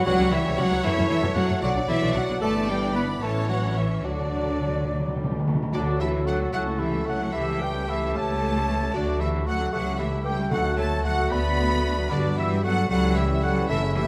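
In a rubato 6/8 at 75 BPM counted in dotted quarters, this lively, spirited classical-period orchestral passage in D major carries a smooth, distant violin melody over lush second violins, with mellow cor anglais, airy hollow flute and warm clarinet adding inner lines, bassoon and very quiet gliding violas in accompaniment, tight horn chords, a focused cello bass above up-front double basses, round soft-mallet timpani filling at 4.1 seconds, and dark, roomy trumpet stabs entering at 5.7 seconds, set in a moderate concert-hall reverb.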